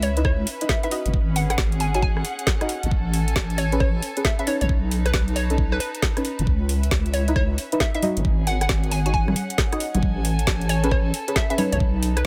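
A deep, saturated wobble bass sits up front in this moody, skippy two-step UK garage cut from a longer piece, moving at 135 BPM in C# minor with a 64% swing on the sixteenths through C#m7, G#7sus4, Amaj7 and B7. A knocking electronic kick and a forward garage kit of congas, metallic hats, rim clicks and a woody snare drive the groove, while a hollow, bouncy square pluck carries the melody with chorus and dub echo. Nasal, mellow chord stabs arrive at 0.2 seconds with their own chorus and echo, and a smooth bowed string section with vibrato pumps softly beneath, all in a dry, close sound.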